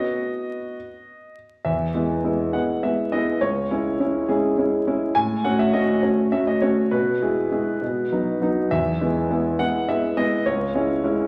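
A warm, up-front concert grand piano plays alone through this cheerful, playful classical-period sonatina excerpt in a straight 6/8, its smooth, vintage tone reaching down to a deep bass and carried by a recital hall's lush reverb and a vinyl crackle, as the harmony moves from a B chord into E major at 1.7 seconds and on through C-sharp minor and F-sharp minor, then returns through B to E before landing on C-sharp minor.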